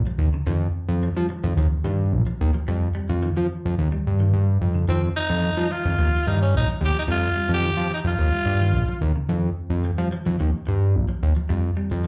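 A straight 4/4 groove at 109 BPM drives this funky, hypnotic afrobeat clip from a live club gig heard through the venue's PA, with a fat, detuned sawtooth analog bass and its filter sweep sitting up front, a clean semi-hollow electric guitar picking arpeggios in spring reverb and slapback echo over Ebadd9 and Fsus2, and a breathy, raspy tenor saxophone with vibrato and slapback echo taking a gritty, punchy solo from 4.9 to 9.0 seconds.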